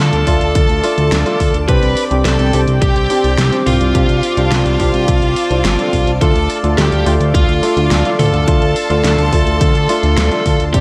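Moody, nostalgic synthwave excerpt cut from a longer piece, where a distorted, picked electric lead guitar carries the melody with delay over a fat, saturated analog bass and shimmering pulse-width pad that both pump with sidechain, a bright vintage string machine with ensemble chorus and cassette-tape character adds a soft second line in the background, a dark, worn concert grand with audible action noise plays delayed stabs, and a pop kit with a gated-reverb snare and toms enters at 0.1 seconds before a punchy electronic kick joins at 0.3 seconds, all moving from Dm to Csus2 and back to Dm at 6.2 seconds in a light reverb.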